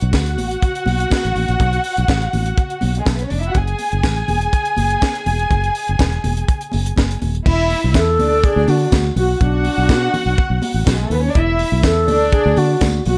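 A straight, driving disco groove in 4/4 opens this sultry passage, set by a tight funk drum kit up front, with a dry, high-tuned snare, tight kick, hi-hat and crash cymbal. A round, foam-muted fingered electric bass holds the low end, while damped, thick-skinned congas and a jingly, distant tambourine sit in the background. A dark, woody violin section, bowed sul tasto with vibrato, spreads a lush second line over chords moving from B7 to F#sus2. At 7.5 s the harmony turns through E5, D and Bm. At 8.0 s a breathy, wooden-headed alto flute enters up front with a tongued, expressive melody. A light studio reverb frames the mix.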